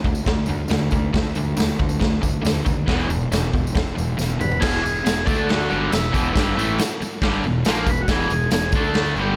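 A straight 4/4 garage rock groove drives along at 138 BPM in this swaggering, rowdy clip cut from a longer piece, with a raw, saturated drum kit and its punchy kick up front, a jingly tambourine, and a crunchy, double-tracked overdriven guitar riff alternating between D5 and E5 chords. A round, fuzz-soaked fingered bass sits darker in the background. During a drum fill that starts at 4.2 seconds, a buzzy vintage combo organ enters at 4.4 seconds with an overdriven melody, all captured dry.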